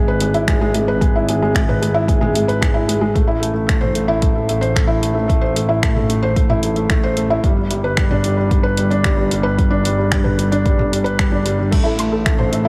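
A felt-muted upright piano opens this intimate, melancholic piano-and-strings electronica in A minor at 112 BPM, its mellow riff sitting up front with audible action noise and a digital delay, over a bowed chamber double bass section whose earthy, lightly vibrato-touched low notes pump with the sidechain. A tape-tinged deep house kit of finger snaps, hi-hat, toms and crash joins at 0.2 seconds, with a deep, layered electronic kick arriving at 0.5 seconds, both sounding re-recorded in a small room, as the chords move from E/G# through Am and G. At 11.7 seconds a soft, round pluck adds dark, chorused arpeggios in the background, and light reverb frames this brief cut from a longer piece.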